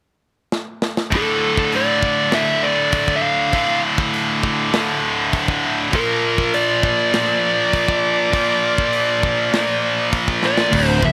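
Epic and heavy, this short heavy metal passage in D minor moves at 100 BPM in a straight 4/4, opening with a drum fill from the tight, acoustic kit of crash, hi-hat, kick and snare before two bright, distorted high-gain rhythm guitars, one of them scooped, drive up-front riffs over D5 and then Bb from 1.1 seconds. A dark, high-gain lead guitar with delay carries the melody from 1.2 seconds, sitting highest in pitch. Near the end, after a second drum fill, a crunchy, double-tracked overdriven guitar and a round, punchy fuzz bass enter at 10.7 seconds, all in a dry sound with little reverb.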